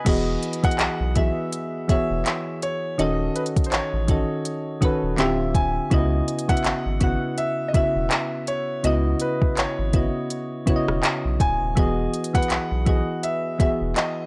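Contemporary R&B at 82 BPM in 4/4, with a swung sixteenth-note feel and a late-night, sensual mood, heard as a short cut from a longer piece. A clear, natural concert grand piano carries the melody in a narrow upper range, set against soft, round electric-piano-like synth keys with chorus that sit up front and fill out the accompaniment from low to high. A saturated sub bass enters at 0.1 seconds, deep and thick with a sine-like core and sustained notes, while a smooth, produced drum kit brings a soft kick, handclaps, rim clicks, hi-hat and crash cymbal with a tape-tinged character. The harmony moves from Emaj7 through D#m7b5, Dm11 and C#m11 before returning to Emaj7 near 11.8 seconds. The overall sound is dry and gritty, like a hardware recording bounced to cassette, wrapped in a digital ambience.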